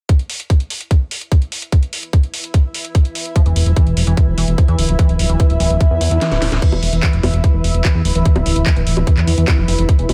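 A tight, up-front electronic kick drives this driving, alien psychedelic trance excerpt at 147 BPM in straight 4/4, joined from the start by a layered electronic kit with a cracking snare, metallic hi-hats, crash cymbal, handclaps and bongos. A cloudy granular pad fades in from 2.4 seconds, its blurred, detuned sine tones drifting in the upper register with built-in reverb and sidechain pumping. From about 3.5 seconds a fat, thick analog bass holds down the low end with detuned sawtooth and square-wave tones, while a squelchy, resonant acid bass riff sits in the background with chorus, delay and its own sidechain pumping. A short drum fill and break at 6.2 seconds, marked by a very quiet electronic swell, lead into a new section where a filter sweep moves across the acid bass. A tense, warbling drone of swarming, bright granular chords arrives at 7.5 seconds behind the mix, its reverb contrasting with the otherwise dry sound.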